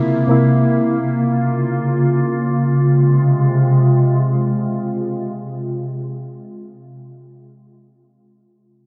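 The sound is dark, set in a light reverb, with two synth parts sitting up front. This short hip hop fragment, cut from a longer piece, unfolds in free time in F harmonic minor with a menacing mood. Soft electric-piano-like synth keys, round and warbling with a vintage chorus, strike a C7 chord at the start and fade away by 1.0 seconds. A glassy FM pad carries sustained chords through to 6.8 seconds, its slow attack and long release giving it an ethereal, mellow haze thickened by ensemble chorus and its own reverb. The harmony moves from C7 to Bb minor at 0.9 seconds, then settles on F minor at 2.6 seconds as the second section begins, leaving the pad to hang alone.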